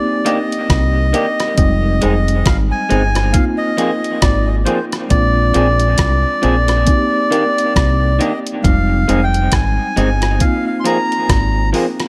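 Swung sixteenths in 4/4 carry this smooth, bittersweet lovers rock reggae excerpt, where a clean 12-bit drum machine with a thumpy kick, hi-hat and rim click sits up front beside a round, punchy, dark dub fingered bass, while a mellow tine electric piano plays accompaniment, a slightly broken-up, lo-fi electric guitar through a small old amp adds tape-echoed stabs, and a reedy, breathy melodica carries the tape-echoed melody over light reverb.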